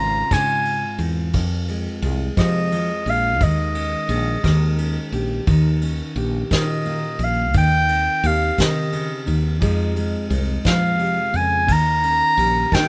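Nostalgic and intimate, this short acoustic folk-pop ballad moves at a slow 58 BPM in a straight 6/8. A clarinet carries the melody up front in a classical style, its tone warm. Beneath it, a fingerpicked steel-string acoustic guitar with old strings gives a woody, full-bodied accompaniment, while a fretless electric bass adds a warm, hollow low end. A vintage drum kit played with brushes enters at 0.3 seconds, with dark cymbals, a punchy kick, rim clicks and a rolled-off top, sitting mid-forward in a small room. The harmony drifts through Dbmaj7, Fm7 and suspended and extended Eb chords, and the dry, close sound keeps the whole passage personal.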